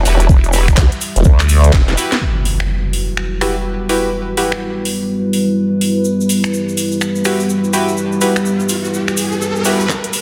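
Swaggering and gritty, this bass house excerpt at 125 BPM in E minor opens on a drop where a nasal vowel-sweep wobble bass and a detuned formant-sweep wobble bass pump beneath a dark, ring-modulated analog pad on an Emadd9 chord alongside a knocking electronic kick, while band-passed sawtooth chord stabs with delay, a garage kit of finger snaps, handclaps, metallic hats and a cracking, soft-clipped snare, and a grainy cabasa ride the swung groove, before an electronic impact hits at 2.2 seconds and a riser builds from 7.2 seconds toward the kick's brief return at 9.9 seconds, all within a lush hall and a dense, heavily limited master.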